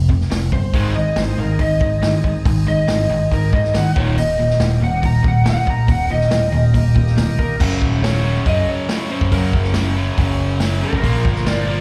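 Driving and swaggering, this classic rock excerpt from a live club gig at 140 BPM sets a crunchy overdriven guitar and a bright distorted guitar riffing in the background over a growling picked bass and a punchy, up-front vintage drum kit, while a dark, slightly broken-up slide guitar played with fingerpicks solos through slapback echo until 7.6 seconds, and a gritty tonewheel organ with key click and slow rotary speaker holds chords underneath, dropping out at that point and returning at 10.7 seconds, all heard through the venue's PA with light club reverb.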